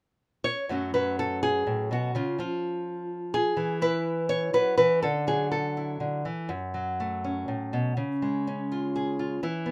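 A lone nylon-string guitar enters at 0.4 s, fingerpicked in a melancholic, wistful folk vein, its dark, small tone placed up front with a light touch of reverb. The playing moves in a rubato 3/4 around 124 BPM in F# minor, tuned slightly high to A4 = 441 Hz, and ranges from F#2 to C#5. The harmony travels from F#madd9 through C#, E5 and Dadd9 back to F#m and C#, in a short solo passage cut from a longer piece that runs to 9.7 s.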